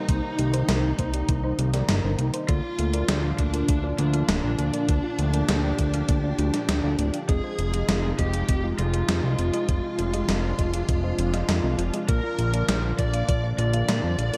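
An overdriven lead guitar through a small cranked amp carries the melody with delay over a fat, saturated analog bass, a thumpy electronic kick and gated 80s drum-machine hi-hat and snare, while a shimmering string-machine violin line, a warbling chorused pad, a tine-like synth pluck playing arpeggios, mellow FM electric piano stabs and a barely audible downlifter in the first 2.5 seconds fill out this dark, cinematic, driving synthwave excerpt at 100 BPM, cut from a longer piece and moving from Cm7 through Bb/D and Fm7 to Bb.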